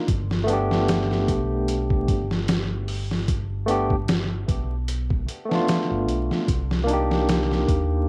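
Hypnotic and cinematic, this short trip hop passage, cut from a longer piece, settles into a lightly swung groove in 4/4. A barky tine electric piano sits up front, lightly overdriven through a combo amp, with tremolo and tape echo colouring its accompanying chords as they rest on Gadd9 before shifting to Cm7 at 6.5 seconds. Underneath, a fingered electric bass adds a dark, round, amped low end. The sampler-style drum kit sounds compressed, pitched down and gritty, with a thumpy kick, a medium-tuned snare and hi-hat, re-recorded in a large room and placed up front. Light reverb and digital ambience surround the parts, while the cassette home-recording quality and vinyl crackle lend the whole piece a worn, lo-fi patina.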